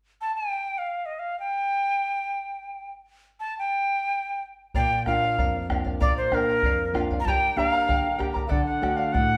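A reedy cane quena leads this earthy, festive Andean folk piece, sitting up front with an airy tone, vibrato and tongued notes that carry a chiff. It plays alone in free time from 0.2 seconds, ranging from Bb4 to Bb5. At 4.7 seconds a bright, shimmering charango joins with fingerpicked accompaniment on double strings, some of them octave-doubled, alongside a deep, dark bombo. A fingerpicked nylon-string guitar with fresh strings and a classical touch enters at 4.8 seconds as the harmony moves from Bb to Gm and then D. The ensemble sounds like a band playing live in one room, bathed in a large-studio reverb with a faint mains hum beneath.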